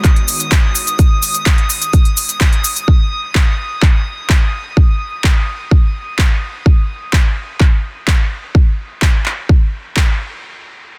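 A punchy, up-front electronic kick drives this bittersweet, expansive progressive house piece at 127 BPM in G# minor, alongside a deep house kit of cabasa, handclaps and smooth hi-hats re-recorded in a small room, while a lush, detuned sawtooth unison pad with chorus and sidechain pumping holds a G#m7 chord in the background under a filter sweep until 2.8 s, and a glassy sine texture of drifting overtones, bright and calm with chorus and built-in reverb, hovers high above until 6.7 s, inside a dense, heavily limited modern master.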